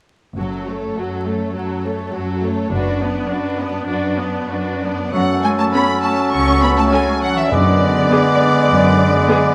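The rich, close violin section carries an expressive, vibrato-laden melody over a second violin line, focused up-front violas, a lush cello section and an intense double bass section in this urgent, restless classical-period orchestral excerpt in F# minor, moving at 101 BPM in 4/4 with a rubato feel. At 5.1 s the winds join: an airy, hollow flute group and a background clarinet add second lines alongside a smooth oboe, while a bassoon with light vibrato and a very quiet, tight French horn section supply accompaniment and sustained chords. Round, soft-mallet timpani sound in the background from 7.5 s, all set in a moderate scoring-stage reverb with vinyl crackle.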